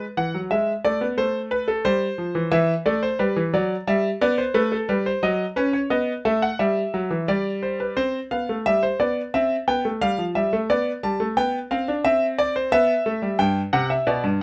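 Classical baroque-style two-part invention for solo concert grand piano at 89 BPM in a straight 4/4, stately and joyful, its clear, up-front tone with deep bass and short sustain captured by close, detailed microphones in light reverb, moving from a minor-leaning opening into C major at 8.0 s in this short excerpt cut from a longer piece.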